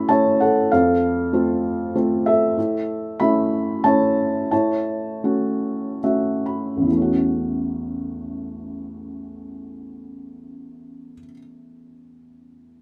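Sunny and warm, this brief classical passage from a longer piece for solo felt-muted upright piano moves in a lyrical, rubato 3/4 between 66 and 98 BPM in A major, its soft, mellow, intimate tone sitting up front in a moderate studio reverb across a span from A1 to B5, easing into a slowdown from 2.6 to 6.9 seconds that closes with a soft piano fill starting at 5.6 seconds before a second section begins at 6.9 seconds.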